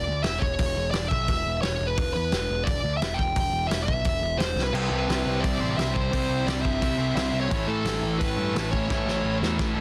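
Rebellious and energetic, this punk rock excerpt opens in a half-time feel with a smooth overdriven lead guitar carrying the melody over a fuzzy, up-front picked bass and a loose, gritty drum kit with dark cymbals and a punchy kick. At 4.7 seconds a crunchy overdriven guitar and a tight, bright distorted guitar enter together on riffs as the chords move from C to A, with drum fills at 4.6 seconds and again from 8.9 seconds. The sound is dense and heavily limited, with light reverb and a studio-room feel on the drums.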